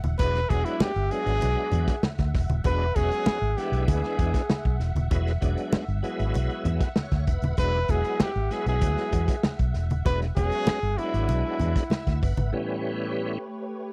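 A clear, close-miked trumpet carries the melody of this gritty funk excerpt, its vibrato-tinged solo line sitting up front with a touch of tube saturation. Underneath, a crunchy breakbeat kit with a tight kick, a medium-tuned snare, hi-hat and a rolled-off top drives a straight 97 BPM groove in 4/4, joined by a round, foam-muted fingered electric bass and low-tuned, thick-skinned congas. A bright tonewheel organ punches in with shouting, lightly overdriven stabs from 0.2 seconds, its key click and slow rotary speaker adding motion, and it breaks into fills around 6.3 seconds and again near the end of the groove. Far in the background, a soft string machine holds silky, slowly blooming chords coloured by ensemble chorus. The harmony rests on an E9 vamp in E mixolydian, then shifts to A9 at 12.5 seconds, where the drums, bass and congas drop out and the organ and strings ring on briefly. 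The dry, close sound recalls a 1970s studio, with little reverb.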